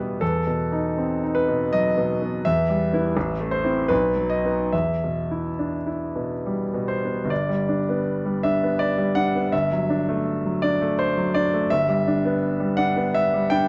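Set in a dark, lightly reverberant production, this stormy, brooding excerpt of a romantic classical character piece features a solo concert grand piano, brilliant and up front with a deep bass, playing in a rubato 3/4 at roughly 68-85 BPM, moving from E minor to G major at 7.3 seconds.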